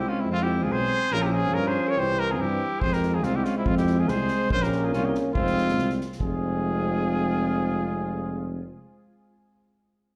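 A mellow trumpet carries the melody up front from the first moment, over a mellow tuba bass, a clear alto saxophone second line and a vintage-toned trombone in the background, and a very quiet, distant euphonium, with slapback echo on the trumpet, saxophone and trombone. This bittersweet, restless Balkan brass band piece moves at 142 BPM in a swung 2/4 in F harmonic minor, circling through Fm, Bbm and C, with light vibrato and classical-style phrasing. An acoustic drum kit with a punchy kick and airy bundle-stick snare joins from 2.8 to 6.4 seconds, all heard as a live gig through the venue's PA with club reverb and small-room ambience.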